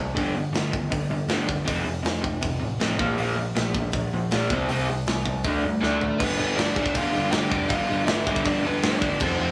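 A straight 4/4 pulse powers this rowdy, upbeat punk rock clip, where a gritty, saturated drum kit with a tight kick sits up front beside a crunchy, double-tracked overdriven rhythm guitar riff and a dark, round hollow-body bass, until a drum fill at 5.8 seconds brings in a biting overdriven lead guitar melody that carries through a new section from 6.2 seconds, all captured as a band playing live in one room with moderate studio reverb.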